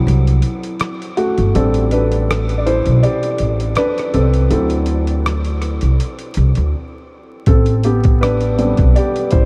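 Lo-fi hip hop at 81 BPM in A dorian with a lightly swung 16th feel, melancholic and reflective: a soft, muted, intimate felt-muted upright piano takes a solo throughout over D7 and Am11 chords, colored by cassette tape and a low-pass filter, while a woody pizzicato upright bass anchors the low end and a gritty, compressed sampler-style kit of hi-hat, thumpy kick and rim click enters at 0.1 s, the dreamy mix drenched in huge ambient reverb and vinyl crackle.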